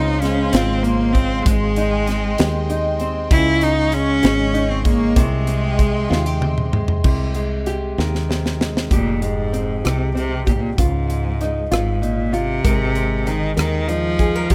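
A small room lends intimacy to this tender, romantic six-eight pop ballad in Ab major, moving gently at 64 BPM, with a clear, bowed solo cello singing the melody up front, its vibrato focused and close. Boxy fingerpicked nylon-string guitar and a dark, growly fretless electric bass with a round, hollow-body tone support the tune, while an airy, breathy vintage pad with chorus warbles beneath until 7.0 seconds. A polished acoustic drum kit with a punchy kick and high-tuned snare sits prominently in the mix, adding fills at 6.1 and 8.0 seconds as the harmony moves from Dbmaj7 through Fmadd9 to a closing Abadd9.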